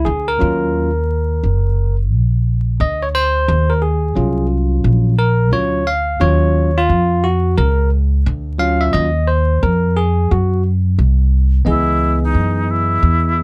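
Nocturnal and cool, this short jazz-hop cut from a longer hip hop piece moves at 88 BPM in 4/4 with a 16th-note swing. A bell-like, barky tine electric piano sits up front and carries a solo over a D#m9 chord, its clean, direct tone bright against the mix. Beneath it, a pizzicato upright bass with gut strings gives a woody, thumpy low end that stays prominent throughout. At 11.7 seconds the harmony shifts to C#m9 and a concert flute enters with a pure, tongued line with vibrato and lifted highs. Light reverb and vinyl crackle give the recording a late-night patina.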